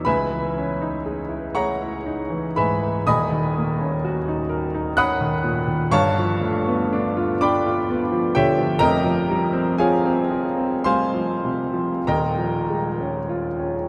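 Luminous and serene, this brief impressionist passage for solo piano drifts in a rubato triple metre, cut from a longer classical piece. A clear, intimate baby grand sits up front with audible action noise, spanning D#1 to F#6 as its lush extended harmonies move from C#m9 through G9 and Fmadd9 to an Eb9sus4 at 12.0 seconds. A cathedral reverb with a 6.8-second decay surrounds the instrument, letting each chord bloom and linger in a vast, echoing space.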